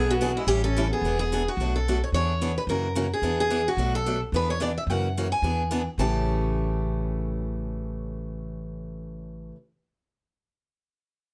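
Jazz manouche in a playful, swinging mood, this short excerpt puts a bright, boxy steel-string acoustic guitar up front on the melody, its picked lines carrying an audible finger squeak. A picked archtop guitar with fresh strings supplies the accompaniment, while a woody, thumpy upright bass on gut strings anchors the low end. A single distant violin adds a second line with vibrato and portamento for only the first 1.3 seconds, and the whole ensemble sits in a moderate studio reverb.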